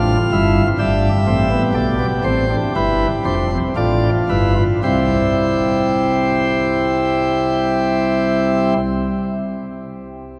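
In a straight 4/4 pulse at 55-65 BPM that slows down over the first 4.8 seconds, this elegant, joyful baroque-style four-part fugue in C major, cut from a longer piece, features a solo chamber organ on a full principal chorus with chiff, sounding up front across a span from F1 to F5 as Dm, C/G and G7 resolve to C at 4.8 seconds, set in the long, wet cathedral reverb of a church or concert hall.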